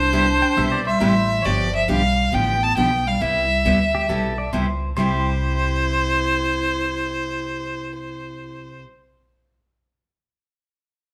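Playful and swinging, this short western swing excerpt is led by a clear, focused bowed fiddle up front carrying the melody, while a raspy, growling clarinet with subtone vibrato adds a jazz-style second line beneath it. A woody, dark pizzicato upright bass and a picked steel-string acoustic guitar fill out the accompaniment, and a clean, compressed pedal steel guitar played with fingerpicks and volume swells enters at 0.4 seconds, drops out briefly, then returns at 3.9 seconds. The band sounds live in a single stone room with moderate reverb and a faint mains hum, moving from Cmaj9 to G7 and back before settling on C.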